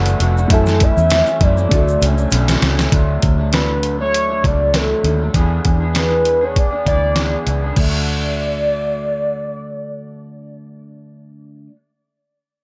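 A velvety synth lead carries the melody from the start, its smooth, wave-folded tone softened by a subtle chorus and delay, floating over a hazy, dreamy bedroom-pop groove in D lydian at 99 BPM with a gentle sixteenth-note swing. Up front, a gritty, pitched-down trip hop drum kit thumps along with compressed kick, snare, hi-hat and crash, while a dark, foam-muted electric bass supplies round, punchy low end. A twangy, slightly broken-up electric guitar through a small old amp adds accompaniment drenched in lush chorus and warbly pitch drift. In the opening stretch, a worn, slightly detuned upright piano sits very quietly alongside a grainy egg shaker in the background, and both drop away at 2.9 seconds after a drum fill that begins at 1.7 seconds. The chords move from Bm7 through F#m7 and Dmaj7 to D and E7, the drums stop at 7.9 seconds, and the synth, guitar and bass carry on through light reverb in this cut from a longer piece.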